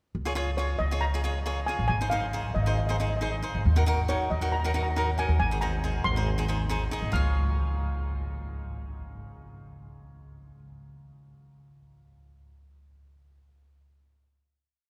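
A woody, growly pizzicato upright bass opens this short, bouncy and carefree calypso in Db major at 138 BPM, its syncopated figure sitting up front. A bright cavaquinho follows at 0.3 seconds with crisp picked triad chords, and a shimmering yet dark steel pan, played with medium rubber sticks, takes the smooth melody at 0.6 seconds in catchy hook phrases. The trio moves through a brief verse before settling on a final Db chord at 7.1 seconds, all bathed in the long, wet reverb of a cathedral-like hall.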